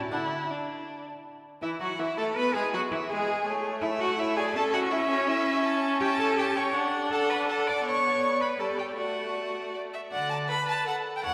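In a quick, straight 3/4 at 162 BPM, this cheerful, spirited string quartet movement in the classical style opens in A major and turns to D major at 5.6 s, heard as a short cut from a longer piece. Two bowed violins carry the music, one singing a focused melody with vibrato and the other weaving a soft-attacked, expressive second line with portamento, while a smooth, even viola fills in the rich accompaniment up front. Beneath them a clear cello with light vibrato anchors the bass, and the whole quartet rings in a wet church reverb.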